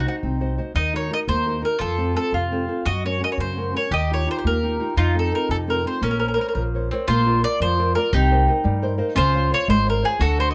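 Romantic and wistful, this short cut from a longer Italian folk serenade moves in 6/8 at 114 BPM. An up-front, woody mandolin with picked double strings carries the melody over a bright bowl-back mandolin second line, a small fingerpicked nylon-string guitar with audible finger squeak, and a thumpy, up-front pizzicato upright bass, set in moderate studio reverb, as the harmony turns from Bb harmonic minor to Bb major at 7.1 s and the guitar adds a brief fill at 8.6 s.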